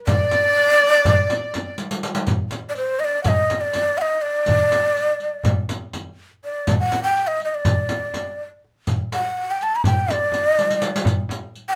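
A passionate Turkish makam ensemble in 9/8, cut from a longer piece, led by a breathy, close-miked ney whose unsteady, vibrato-laden tongued melody sits up front in a small, moderately reverberant room. A soft, floating violin section holds a pure second line only until 1.7 seconds. Beneath, a clay-shelled darbuka, a deep, large frame drum and a riq with dark, saturated jingles keep the odd-metre groove, adding drum fills at 1.8 and 10.6 seconds.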